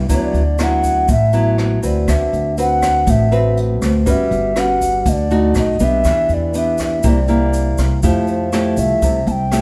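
A clay alto ocarina carries the melody with an airy, hollow tone, its tongued notes shaded by vibrato and set back at a distance. This relaxed, sophisticated bossa nova fragment, cut from a longer piece, moves in a straight 4/4 feel. An up-front, fingerpicked nylon-string guitar supplies the accompaniment through rich chords such as D69, Gmaj9#11 and Em7, while a woody, thumpy pizzicato upright bass with steel strings anchors the low end. A roomy, distant jazz kit played with brushes adds hi-hat, rim click and a boomy kick, and a grainy tube shaker sits quietly beneath it all. The harmony turns toward Fmaj9 as a new section opens at 8.0 s, and a moderate recital-hall reverb gives the whole a church-like sense of space.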